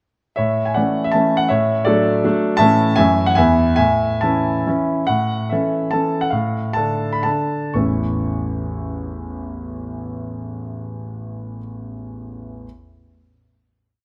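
A solo concert grand piano opens this short, complete romantic dance in triple time, proud and rustic in character, its single-line melody carried in thirds over bass notes and chords placed on the beats, with dotted rhythms and free rubato. The tone is clear and natural, with a deep bass and long sustain, set up front in a moderately reverberant recital hall. After the opening dance phrase, the music slows from 4.4 seconds into a brief coda, passing through a darker minor colour before settling on a final A major chord at 7.8 seconds that rings out until 12.7 seconds.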